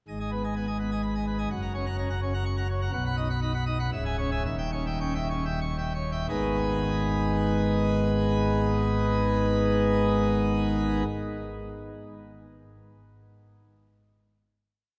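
A full, brilliant pipe organ plenum with mixtures and chiff opens this short, stormy and dramatic G# minor classical toccata in 3/4 at 87-127 BPM, its rippling baroque figuration and a second figure sitting up front in a dark production, moving through G#m, F#, B, C#m and D#7b9 as it slows from 2.2 to 6.3 seconds, then holding a final G#m chord from 6.3 seconds that rings into a long, wet cathedral reverb.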